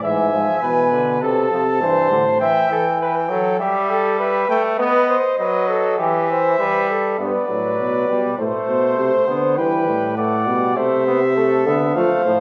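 Solemn and serious, this excerpt from a classical imitative canzona for brass ensemble moves in a straight 4/4, with a smooth-topped trumpet carrying the melody above a vibrato-tinged, distant flugelhorn on the second line. A brilliant, up-front trombone supplies accompaniment with light vibrato, while a vintage-toned euphonium holds the bass, dropping out at 2.4 seconds and returning at 7.2 seconds as the harmony turns toward a closing Cmaj13. The ensemble sits in a roomy recital-hall reverb that suggests a church or concert hall.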